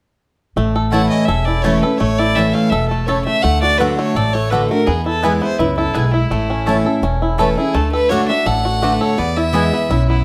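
A rich, earthy fiddle carries the melody in this joyful, lively bluegrass excerpt, its bowed line smooth on top and sitting up front from 0.9 seconds. Underneath, a bright, full-bodied dreadnought guitar picks the accompaniment on fresh strings, with a touch of finger squeak, while a twangy, percussive banjo played with fingerpicks spins arpeggios, both entering at 0.6 seconds. A thumpy, gut-strung upright bass plucks a dark, woody low end up front, and a mandolin adds picked double-string stabs. Near the close, at 8.8 seconds, a second fiddle slips in with a clear, airy-bowed line and light vibrato, heard close. The tune moves briskly at 167 BPM in straight 4/4 through A, D and E in A major, and a moderate studio reverb gives the ensemble a sense of room.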